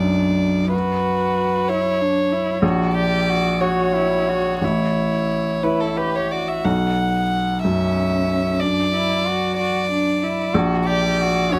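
Close, detailed microphones and light reverb frame this reflective, fragile neoclassical fragment for piano and strings, cut from a longer piece and moving in a rubato 6/8 at around 58-64 BPM in B minor. A clear baby grand piano carries the accompaniment up front, its action noise audible and its long sustain ringing through chords that shift from Bmadd9 to F#/A# and A, while a single violin sings the melody from A4 to F#5, bowed sul tasto with a soft attack and a pure, floating tone. Beneath it, one dark cello plays a second line with vibrato and an intimate sul tasto colour, all three parts sounding throughout the 11.6 seconds.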